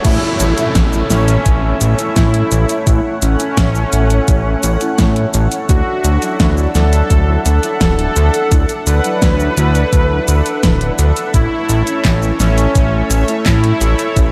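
Synthwave at 85 BPM in A major, romantic and uplifting, where a fat, detuned analog bass with tube saturation sits up front beneath a thumpy, tape-warm electronic kick and an overdriven pop kit of fat snare, metallic hats, handclaps, shaker and crash, while a smooth, airy supersaw melody with analog delay plays over a shimmering chorused pulse-width pad with sidechain pumping, very quiet dark synth brass stabs, and a background riser and downlifter that drop out at 5.7 s as the chords move from A to Dadd9 and back, all bathed in a dreamy cathedral reverb in this cut from a longer piece.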